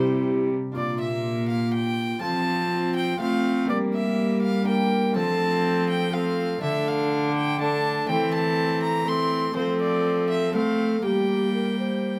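A courtly, solemn renaissance-style consort dance in 3/4 opens at once with its full ensemble, moving at 122 BPM with a straight feel, and the passage is cut from a longer piece. A single violin carries the melody up high with a close, nasal, gut-string tone, its airy bow giving the period-style line a reedy edge. Beneath it a tenor recorder sings a second line with a pure, hollow, wooden sound, its soft attack touched by a little chiff and set further back in the room. A viola and a dark cello, each one player bowing gut strings with a smooth top, fill in the accompaniment and bass, while a fingerpicked concert harp rings quietly in the background. The harmony moves through C, Bb, F, Gm, Dm and Am/E before returning to F and Gm, all heard in a studio space with moderate reverb.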